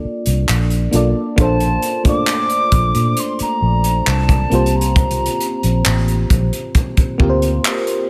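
A mellow, warbling FM electric piano with chorus and a dark, round, foam-muted electric bass open this longing, late-night contemporary R&B excerpt on a Bbmaj7 break; crisp fusion drums with a tight kick, hi-hat and handclaps join at 0.3 s, and at 1.4 s a distant, pure silver flute with vibrato and tape echo carries the melody over Bbmaj9 and C7sus4 until 6.1 s in a dry mix.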